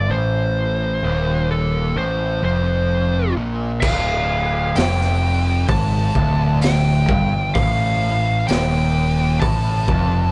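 A fuzz lead guitar sings a picked, compressed melody over a dark, double-tracked fuzz guitar riff and a bright, overdriven fingered bass growling low in this heavy, brooding stoner and doom metal excerpt, with a raw garage drum kit joining at 3.8 seconds, its gritty, saturated small-room sound carrying a punchy kick, a high-tuned snare and dark cymbals, all captured with the band playing live together in one room under light reverb.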